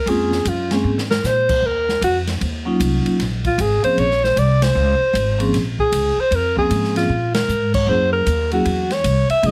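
Heavily compressed, radio-like sound with light reverb frames this smoky, swinging small-group jazz excerpt, where an alto saxophone with warm subtone and vibrato carries the melody up front over woody, thumpy pizzicato upright bass, dark, ringing vibraphone with medium motor vibrato, and an airy acoustic drum kit with dark cymbals and a boomy kick that plays fills at 0.8 and 7.1 seconds, with band accents at 4.6 and 7.3 seconds.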